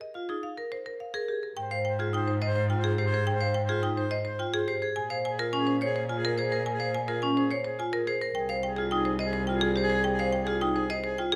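Set in a moderate recital-hall reverb, this meditative yet urgent section of a longer minimalist classical pattern piece moves at 106 BPM in 3/4, opening with a dry, woody marimba melody struck with hard mallets and, from 0.2 seconds, ringing, airy vibraphone arpeggios shimmering with slow motor vibrato, before a soft-attack classical soprano saxophone second line and an expressive bowed cello bass with portamento join at 1.6 seconds over harmony that moves from Abmaj7 toward Fm7/C.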